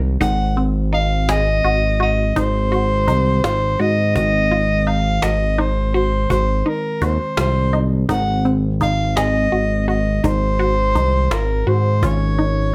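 Driving and bright, this progressive instrumental excerpt moves in an uneven 11/8 meter. A breathy soprano saxophone with vibrato and subtone carries the jazz-style melody up front, over a smooth synth bass that sits prominently beneath. A squelchy, resonant blip pluck spins arpeggios through chorus and phaser, a gritty overdriven tine electric piano with phaser comps in the background, and a woody cajon adds soft-handed drums, while the harmony rests on Ab7 before shifting to a rootless Bbm/Ab at 12.0 seconds within a light reverb.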